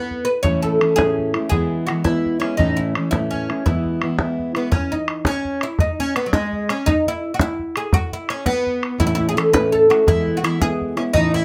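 A bouncy 6/8 jig at 112 dotted-quarter beats per minute drives this bright, rollicking Celtic folk excerpt in E major, with a boomy, open bodhran sounding from the first moments. Up front, a woody, plectrum-plucked fretless oud with doubled strings carries the melody throughout, while a full-bodied fingerpicked jumbo steel-string guitar accompanies on A and E chords, drops out at 5.2 seconds, and returns at 9.0 seconds. Light reverb gives the small-room sound a gentle sense of space.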